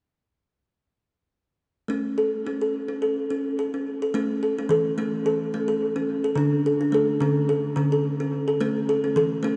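A vast cathedral reverb with a long 7.4-second tail fills this fragment of a longer piece, and nothing sounds above 10.3 kHz. A lone kalimba, woody and hollow-boxed with a bright thumbnail pluck, sits up front from 1.9 to 9.6 seconds, its short, airy notes spread by a diffuse ambient delay. The meditative, gentle world-style music moves at 107 BPM in 4/4 with a light swing in A major, tuned to A4 = 437 Hz, and its harmony moves from A to D5 and back to A.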